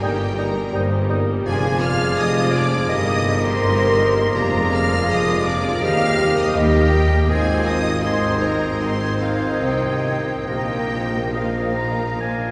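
A distant, clear violin section carries the lyrical melody high above the orchestra, its lush bowed tone intense and shaded with vibrato throughout this 12.5-second passage from a longer classical piece in Eb major. Around it, a second violin section, a bright but very quiet clarinet, a roomy oboe and an airy silver flute with a soft attack weave second lines, while a close-miked bassoon and a very quiet viola section with a smooth top fill in the accompaniment. A French horn section holds sustained chords in the background, and the bass is anchored by a mellow tuba, an even, close cello section and an expressive double bass section. The tempo drifts with a rubato feel in 4/4, moving from Eb/G through Bb7/F and Ab before arriving on Bbsus4 at 10.5 seconds. A wet cathedral reverb places the ensemble further back in a vast, resonant space, lending the warm, lyrical mood a glowing, spacious halo.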